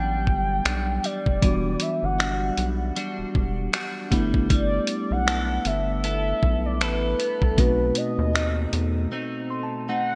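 Contemporary R&B at 78 BPM with a swung sixteenth feel, romantic and smooth, where a round, horn-like synth lead with chorus, delay and vibrato carries the melody over a tine electric piano, a twangy, direct-recorded clean guitar playing arpeggios through lush chorus, a rubbery, bouncy square bass that stops at 9.1 seconds, and a gritty, dusty sampler-style kit of finger snaps, hi-hat and thumpy kick under gated reverb, moving through Em9, G69 and B7b9 in bright 1980s-style digital production before the electric piano fills the closing break, in this cut from a longer piece.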